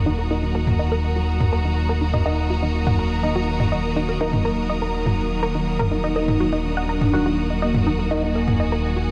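Dramatic and driving, this melodic techno excerpt sits on a single minor chord, with a fat, up-front analog bass and electronic toms pushing beneath a rich, bowed string section holding sustained chords and a clear symphonic string texture floating higher. Muted, detuned dub chord stabs drenched in phaser, lush chorus and delay mingle with round analog pluck arpeggios. At 5.9 seconds an expressive, dark synth lead with vibrato enters to carry the melody, all set in light reverb and digital ambience.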